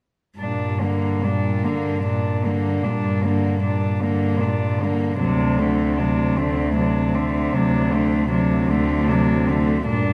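A rich, up-front cello carries the accompaniment in this melancholic, yearning classical passage for four bowed cellos, played sul tasto with soft attacks in G minor at a slow, rubato 51 BPM in 12/8. Above it, one cello sings a pure, floating melody with a smooth top, while a second line adds light vibrato and an airy, intimate bow, and a fourth cello anchors the bass. The harmony moves from G minor to D7 at 5.2 seconds in a reverberant recital hall, with lossy compression artefacts, and the music is cut from a longer piece.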